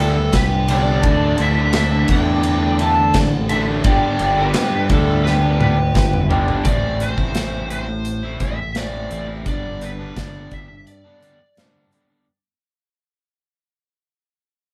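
Recorded as a band playing live in one room with moderate studio reverb, this swaggering, driving classic rock cut at 86 BPM pairs a dark, overdriven lead guitar through a small cranked amp with slapback echo carrying the melody and a fuzzy octave lead tracing a second line in the background, over a bright, crunchy riff guitar, a lo-fi garage guitar with phaser sitting further back, a growling overdriven fingered bass, a big up-front rock kit with a punchy kick, and very quiet, hollow group handclaps, before a drum fill at 5.2 seconds ushers in a move from G and Dsus2 to A minor as the fuzz lead, garage guitar and claps drop away and the track fades out from 6.7 seconds.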